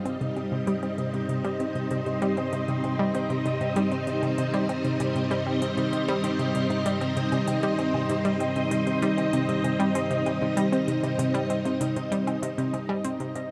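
A lush, vintage string machine holds sustained C minor chords from the start, its sawtooth ensemble sitting up front with a slow attack, while a very quiet, dark, clean electric guitar fingers arpeggios alongside it in this expansive, hypnotic stretch of sequencer-driven ambient space music at 97 BPM. A round, detuned analog pluck repeats a low riff through chorus and tape echo, and faint metallic electronic hi-hat and woodblock, carrying their own tape echo, fade in across the whole passage. A huge, wet reverb bathes the sound, and everything fades out from 11.4 to 13.5 seconds as this cut from a longer piece ends.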